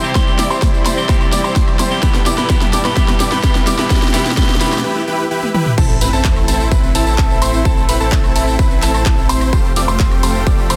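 A dense, heavily limited modern master with light reverb carries this anthemic, emotional stretch of festival progressive house, cut from a longer piece, where a huge detuned supersaw riff, background arpeggios from a brilliant grand piano, and distant, reedy chamber strings all pump to the sidechain over an overdriven big-room drum kit with a huge snare and a punchy, up-front electronic kick. A slightly broken-up picked electric guitar adds accompaniment until 4.8 seconds, and a very quiet riser and sub drop run from 0.6 to 7.7 seconds, beneath the build-up and its drum fills and on into the drop. At 5.8 seconds the drop lands with an impact as a dark, chorused, saturated saw bass enters under chords moving from A minor to Fadd9.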